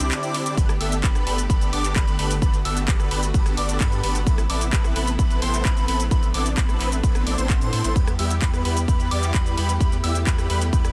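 Festival progressive house in G major at 130 BPM, euphoric and triumphant, where huge, detuned supersaw chords carry a riff with chorus and dub echo over a deep, saturated sub bass, while a catchy square-wave plucky lead spins high arpeggios through a filter sweep and echo, a rich chamber string section sustains earthy bowed chords in the background, a house kit adds handclaps, shaker, rim clicks and warm hats, and a punchy electronic kick enters up front at 0.6 seconds, with every melodic part pumping against the sidechain over a Cadd9 to Gadd9, Amadd9 and Em progression in a dry, dense, heavily limited mix.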